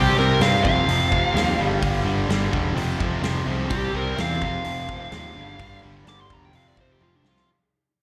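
Hard rock with a driving, aggressive mood, heard as a live club gig through the venue's PA, with a dark, smooth lead guitar soloing up front over riffs from a cranked stack guitar and a second distorted guitar set back in the mix, both bright and carrying slapback echo. A fuzzed, punchy picked bass anchors the low end, while a big acoustic drum kit with a medium-tuned snare and punchy kick enters at 0.4 seconds and closes with a fill at 7.0 seconds. The whole fragment, cut from a longer piece, is fading out from the start.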